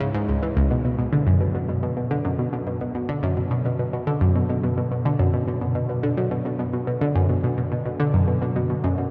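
Bathed in a vast cathedral reverb with a 6.0-second tail, this mysterious, expansive ambient fragment at 107 BPM in straight 4/4 features a solo analog pluck from 0.0 to 9.1 seconds, spanning C#2 to E3, whose round, nasal sawtooth tone with a noise layer, filter sweep and fast, short-decaying attack sits bright and up front, colored by chorus, phaser and delay.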